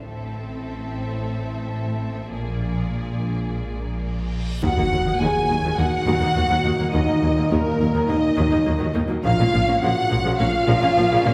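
Cinematic, epic orchestral film score at 104 BPM in 4/4, heroic and dark, cut from a longer piece and settling into Eb minor at 4.6 s. Lush, expressive bowed violins carry the melody and a second line over woody violas, smooth cellos and rich double basses, while mellow French horns hold close-miked sustained chords. A huge, dark reverse cymbal leads into an impact at 4.6 s, where pure-toned flutes, very quiet clear trombones and a vintage tuba join, with the orchestra set in a wet concert-hall reverb.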